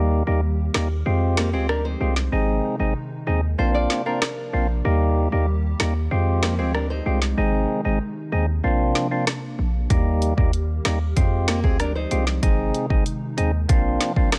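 A sunny, summery dancehall groove opens with a fat, lightly overdriven tonewheel organ playing percussive accompaniment through a stopped rotary speaker, over a hollow, flute-like pad with ensemble chorus and sidechain pumping in the background, and a punchy, heavy 808-style bass up front. An electronic afro-pop kit arrives at 0.7 seconds with a deep kick, woody snare, rim clicks and dark hi-hats roughened by vintage 12-bit sampler grit. A small, fingerpicked nylon-string guitar adds delayed arpeggios from 1.4 seconds and returns briefly at 11.5 seconds, all in a dry, close mix with a straight four-four feel.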